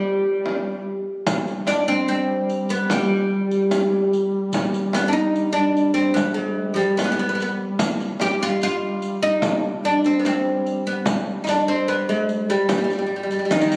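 This festive Persian modal ensemble piece opens with a woody, plectrum-plucked fretless oud carrying the melody up front, its double strings ringing over a mellow duduk that holds a steady drone on G3 with vibrato, soft attacks and scooped notes. A deep, distant frame drum struck with hard hands joins at 0.5 seconds, and a riq with dark jingles follows at 1.3 seconds, adding a quieter percussive layer beneath the oud's line. The groove is straight in 4/4, giving the modal melody a settled, celebratory feel. At 13.5 seconds a drum fill arrives as a lush, bowed symphonic cello section enters on a second line, its expressive vibrato surfacing just as this excerpt is cut from the longer piece. The sound carries a moderate recital hall reverb and a compressed, phone-in-the-room character.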